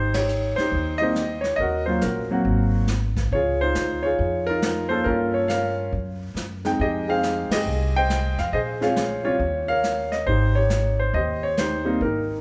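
A playful, swinging jazz piano trio moves at a brisk clip in this short excerpt cut from a longer piece. A warm grand piano carries the melody, sitting up front with a natural tone, while a woody, dark upright bass plucked on gut strings gives a thumpy foundation underneath. A brushed drum kit joins a moment later, with a medium-tuned snare, a boomy kick, hi-hat and ride cymbal setting the swing. The band hits accents together at 0.1 and 7.4 seconds, and a brief break in the harmony at 5.9 seconds breaks up the rich seventh and ninth chords before the progression settles back home. A moderate reverb, like that of a recital hall or church, surrounds the trio.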